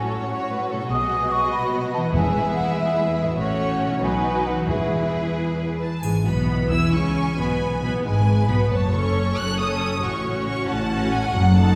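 Stormy and restless, this fast romantic orchestral movement in E major rolls along in 6/8 at roughly 88-99 BPM on dotted quarters, its pulse pushed and pulled by rubato. A violin section carries the melody with light vibrato and a smooth top, while a second, lush violin section and a focused viola section fill out the harmony beneath it. A mellow, hollow concert flute adds a pure second line with a soft attack until 5.3 seconds. Fingerpicked harp arpeggios ring in the background, and a close cello section joins a clear double bass section to anchor the bass. Very quiet hard-mallet timpani sound on E between 2.1 and 5.3 seconds, and a dry triangle glints briefly at 6.0 seconds as the second section begins. The whole orchestra is heard from further back on a scoring stage with a wet reverb, and this brief cut from a longer piece moves through chords such as E/G#, E/B and F#m.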